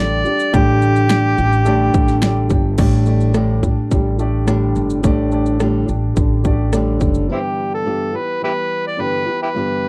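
A dry, close recording with a 1970s studio feel carries this sunny, easy-going acoustic pop piece at 107 BPM in a straight 4/4. An amplified, gritty harmonica with light vibrato and tongue slaps leads the melody up front, while a dark, thumb-plucked flamenco guitar with audible finger squeak plays throughout. A woody, growly upright bass on steel strings anchors the low end, and a punchy, layered electronic pop drum kit joins at 0.3 seconds with a fat snare, rim click, shaker and crash cymbal, its overdrive adding a roomy, re-recorded edge. A polished baby grand piano sits in the background, stepping forward with a clear fill at 1.9 seconds as the harmony moves from Dsus4/A to Dsus4. At 7.3 seconds the piano, bass and drums drop away, and the harmonica returns alongside the guitar over a G6 chord.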